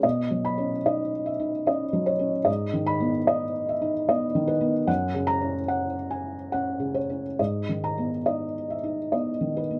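Set up close in a small, modestly reverberant room, a dark, thickly felted upright piano with audible action noise and short sustain plays alone through this wistful, intimate neoclassical minimalist fragment in G# minor, tuned to A4 = 437 Hz, drifting with rubato at about 73 BPM in 3/4 across a Badd9, G#m, F# and G#madd9 progression.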